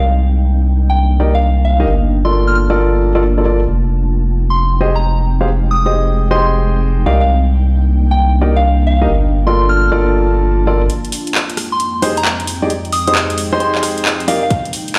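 UK garage in a two-step style, this bouncy, skippy passage moves at 133 BPM with a swung sixteenth feel in F dorian, cycling through lush ninth chords from Cm9 to Gm9 and Fm9. A soft, pure FM bell carries the melody high in its range, treated with chorus and delay, while an ethereal, detuned sawtooth pad holds sustained chords beneath it, pumping against the beat and washed in ensemble chorus and its own reverb as a filter sweep works on it. A thick, saturated sine sub bass sits up front until 10.9 s, and a warm grand piano with audible action noise adds intimate, low-passed stabs with delay, its tone also swept by a filter in the closing seconds. At 10.9 s a garage kit of handclaps, metallic hi-hats and rim clicks enters for a build-up, capped by a tight, tape-tinged electronic kick at 14.5 s. The whole mix sounds as if played on a big sound system in a bare stone room, giving it a hard, echoing ambience, and it is cut from a longer piece.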